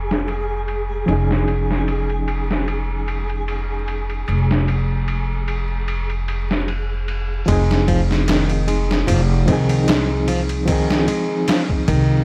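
Dry and close, with a layer of vinyl crackle over it, this short cut from a longer trip hop piece sits in F minor at 75 BPM with a lightly swung 16th feel, its mood smoky and brooding. A sampler-style drum kit sits up front, pitched down, compressed and overdriven, with a thumpy kick, a medium-tuned snare and ride cymbal all muffled as though re-recorded in a small room. Beside it a woody pizzicato upright bass, also up front and tube-saturated, holds the low end under the Fm7 and Dbadd9/F chords. A reedy, gritty electric piano plays accompaniment through a combo amp, colored by fast tremolo and tape echo. A faint, flickering granular texture hangs on a single detuned high note with slow attack and long release until 7.5 seconds. At that point a fingerpicked flamenco guitar with fresh strings enters with tape-echoed arpeggios for the closing seconds.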